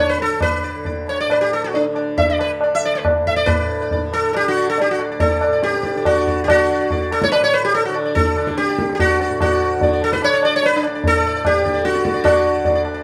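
A plucked sitar leads this radiant, meditative fragment of Hindustani classical music, its round, buzzing tone ringing with sympathetic strings as it carries the melody from D4 to E5 up front in the mix. Beneath it, the tanpura sustains a bright, softly plucked drone in the low register, shimmering quietly in the background. The low-tuned tabla enters at 0.2 seconds, ringing and up front, with a vintage, band-limited character. Set in raga bilaval on D, with A4 tuned to 443 Hz, the piece moves in a straight 7/4 and gradually speeds up from about 135 to 150 BPM, shifting into a new section at 3.5 seconds. The trio plays live together in one room, and a moderate studio reverb lends the acoustic sound a gentle sense of space.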